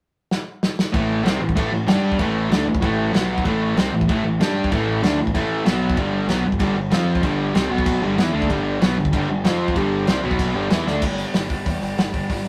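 Punk rock at 190 BPM in G major, this rowdy, upbeat cut from a longer piece charges ahead in a straight 4/4 feel. A loose indie drum kit kicks things off with a fill at 0.3 seconds, its dark cymbals, medium-tuned snare and tight kick sitting up front alongside hi-hat and crash. At 0.9 seconds three guitars come in on riffs: a crunchy overdriven guitar, double-tracked and up front, leads the charge, while a distorted electric guitar and a tight distorted guitar, both bright and picked, sit further back. A growling picked electric bass with overdrive grinds underneath, moving through power chords on A, G, B and F. Another drum fill at 10.9 seconds ushers in a brief closing stretch at 11.0 seconds, where the crunchy and tight guitars drop out and the drums, bass and distorted electric guitar carry on. The sound is a rough rehearsal-room recording with moderate small-room reverb.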